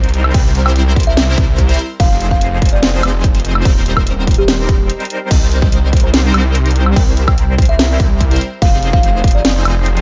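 A thick, detuned saw bass sits up front through this future bass excerpt, its chorused, sustained tone pumping against the sidechain beneath a bold, bright polysynth riff that carries chorus, phaser and tape echo. The mood is emotional and dreamy, moving at 145 BPM in a half-time feel in C minor, with the harmony cycling through C7, Fm7, Eb6 and Cm7. A punchy, layered electronic kick drum, tape-warm and forward in the mix, enters at 0.3 seconds and stops at 9.3 seconds, while a trap drum kit adds a sharp snare, metallic hi-hats, crash cymbal and woodblock in a small room ambience. A woody kalimba with short, airy thumb plucks plays the melody in the background, pumping and trailing tape echo until 9.6 seconds. The passage is built as two drops separated by a brief break from 4.9 to 5.3 seconds, all set in a digital ambience that rolls off the highest frequencies.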